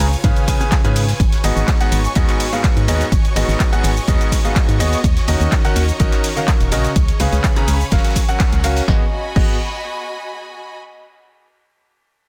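Soulful and bittersweet, this piano house passage, cut from a longer piece, opens straight into a drop that runs until 8.9 seconds. A brilliant baby grand piano carries the riff with long sustain and tape echo, while a hollow, organ-like FM bass with a fast, decaying attack anchors the low end, both pumping against the sidechain. Behind them sit a silky, detuned analog string pad with ensemble chorus and a lush, bowed symphonic string section, their chords moving through G#m7, D#m7, C#7 and F#maj7. An overdriven, punchy electronic kick lands up front from 0.2 seconds, layered with a produced house drum kit of claps, shaker, bright hats, ride and crash, and a very quiet, dry reggae kit with dark cymbals and a high-tuned snare. A band accent hits at 8.4 seconds before a new section begins at 8.9, and the whole mix sits in a small room under a dense, heavily limited modern master.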